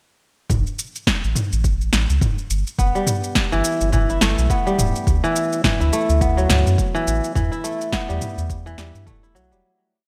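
This hypnotic, mystical organic downtempo piece opens at 0.5 seconds with a round, dark analog bass playing a syncopated riff that pumps against a deep, soft electronic kick, while a layered deep house kit adds shaker, low tom and a punchy, overdriven snare with a small-room character. At 2.8 seconds a crisp, ringing kora enters up front, fingerpicked in a 12-step loop of arpeggios that drifts against the bar and carries a delay. The harmony moves through G, D and E minor beneath this repeating pattern, and the light 16th-note swing keeps the groove loose. A lush hall reverb and a bright, 1980s-style digital sheen frame the whole mix. From 6.6 seconds the track fades out, and the kora rings on briefly after the bass and drums have stopped.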